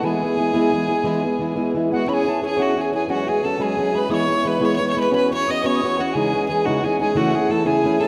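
A full-bodied fingerpicked steel-string acoustic guitar sits up front in this lively, bright Celtic slide in 12/8, beside a clear, intense fiddle melody with light vibrato and a pure, chiffy, tongued wooden whistle line above it, while a reedy harmonium drone breathes in the background, set in a lush hall reverb within a rough home demo mix.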